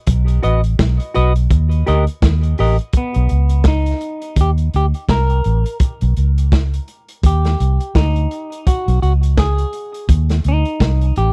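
Laid-back and uplifting, this short roots reggae excerpt with a 16th-note swing pairs a gritty, saturated breakbeat kit and a round, foam-muted fingered bass up front with a dark, clean semi-hollow guitar treated with tape echo that enters at 0.4 seconds and takes a solo from 2.9 seconds, all captured in a dry, close 1970s-style studio sound.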